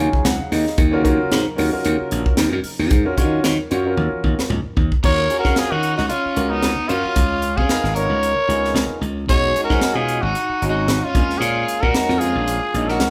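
A growling, raspy trumpet takes the melody from 5.0 seconds, its scooped notes and light vibrato sitting up front in this intense, funky electric jazz fusion excerpt in Eb minor at 113 BPM with a swung sixteenth feel. Underneath, a glassy, punchy slap bass and a tight funk drum kit with a high-tuned snare drive the groove, while a clear concert grand piano with audible action noise comps throughout, opening with a short fill. A hollow, flute-like pad with chorus hangs in the background until a drum fill leads into the second section at 5.0 seconds, where an overdriven, picked electric guitar adds a second line, all captured as a band playing live in one room with light reverb.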